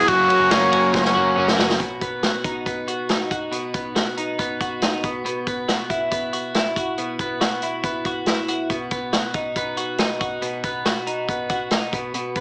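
A straight 4/4 pulse at 139 BPM drives this nostalgic, youthful jangly indie pop fragment in B major, where a vibrato-laden tenor saxophone melody, crunchy overdriven guitar, a very quiet warbling detuned unison pad and a dark foam-muted bass sound only over the opening F# chord and a drum fill, the saxophone dropping out at 1.5 s and the rest falling away at 1.8 s, leaving the up-front, twangy, compressed twelve-string electric guitar with lush chorus to carry arpeggios through B and Esus2/B alongside a punchy vintage drum kit until 12.4 s, all framed by a moderate studio reverb and a small-speaker character.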